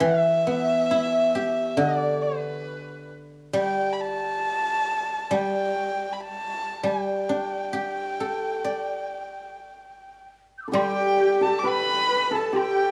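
A rubato pulse of around 68 BPM in 4/4 gives this graceful, pastoral Chinese chamber piece a free, breathing feel in the G gong mode. A dark, intimate erhu carries the melody up front from the start, its soft attack, light vibrato, airy bow and gliding portamento sitting close to the ear. Beneath it, a guzheng played with fingerpicks rings out silvery accompaniment, also placed forward in the mix. Around 10.6 to 10.7 seconds, a second layer arrives: a husky horsehead fiddle with expressive vibrato and slides, a shimmering hammered dulcimer, and a breathy bamboo dizi whose buzzing membrane, tongued chiff and unsteady vibrato hover in the background. A woodblock taps softly behind them in a small room. Moderate plate reverb and a faint mains hum in the studio ambience frame this short excerpt, which is cut from a longer piece.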